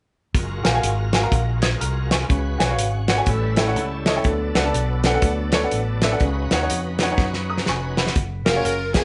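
Soulful and jubilant, this uptempo gospel passage swings at 123 BPM in 4/4. A bright, shouting tonewheel organ holds sustained chords with key click, light overdrive, chorus vibrato and a slow rotary speaker, over a round, amped fingered electric bass and an up-front soul drum kit with a fat snare and tight kick. A clear baby grand piano with short sustain joins at 0.6 seconds, the chords moving from F#maj9 through A7 and D6, and a drum fill from 7.2 seconds leads back to F#maj9. At 8.5 seconds a lush bowed string section and a smooth, subtoned alto saxophone with scooped notes take up the melody, the band sharing one lightly reverberant room.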